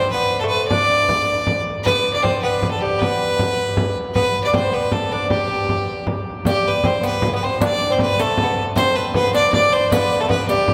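In a straight 6/8 lope, this rustic, ancient-sounding medieval dance, cut from a longer piece, sets a single nasal, earthy bowed fiddle melody up front against a mellow, fingerpicked gut-string lute on a delicate second line, joined at 0.7 seconds by an up-front frame drum and at 6.5 seconds by a very quiet, jingling riq struck with hard hands, all bathed in a cavernous cathedral reverb with a faint mains hum beneath.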